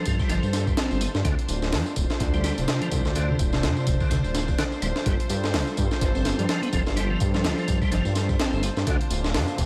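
Soft-edged, floating chamber strings and a piping tonewheel organ open this energetic, playful breakbeat excerpt, the strings holding sustained chords that pump against the beat while the organ plays a lightly overdriven riff through chorus vibrato, a slow rotary speaker and tape echo, with audible key click. Almost at once a compressed, pitched-up sampler-style kit arrives up front, its thumpy kick and high-tuned snare sounding gritty and re-recorded in a large room, joined by hi-hat and a swung sixteenth-note feel. A thick, menacing detuned saw bass sits up front too, saturated and beating, while an electronic, layered tambourine stays in the background, both the kit and tambourine carrying tape echo. The harmony moves between G9sus4 and Dm7, and the organ drops out at 9.0 seconds. A very quiet electronic riser slips in at 9.5 seconds just before the cut, all within a lightly reverberant, echo-heavy mix.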